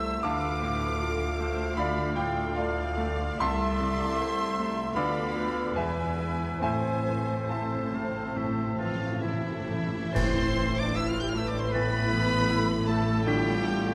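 This tragic, passionate romantic movement for piano and orchestra in A minor moves in a rubato 4/4 at 60-80 BPM: an up-front concert grand piano with deep bass leads alongside a lush, vibrato-rich violin section, while a bright oboe, a hollow, mellow flute and a second violin line weave counter-melodies. Beneath them sit a dark solo bassoon, violas in the background, distant sustained French horns, and cellos and double basses anchoring the bass. Hard-mallet timpani enter with a fill at 6.6 s, and at 10.2 s quiet trombone chords, cymbals and concert bass drum land a full accent, all wrapped in a wet concert-hall reverb with lossy compression artefacts in this short excerpt.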